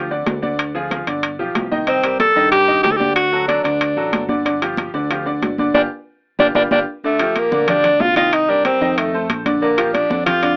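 A clear, up-front tenor saxophone with light vibrato carries the melody from 1.9 seconds in this driving, danceable salsa excerpt in G minor at 186 BPM, over a brilliant, worn grand piano accompaniment, a round, punchy fingered electric bass, damped high-tuned congas in the background and ringing metal-shell timbales, with a band accent arriving at 5.7 seconds and a drum fill at 6.1 seconds, all heard through a moderate booth ambience and an AM radio sound.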